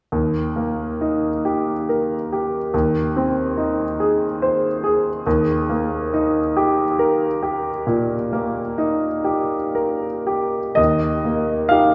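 Bathed in a cathedral reverb with a long 5.7-second tail, a clear, natural-sounding concert grand piano sits up front with a deep bass as it plays a tender, dreamy romantic nocturne in Eb major, moving in a slow, rubato 12/8 at roughly 37-48 BPM through Eb, Ab/Eb and back to Eb across a roughly 12-second fragment cut from a longer work.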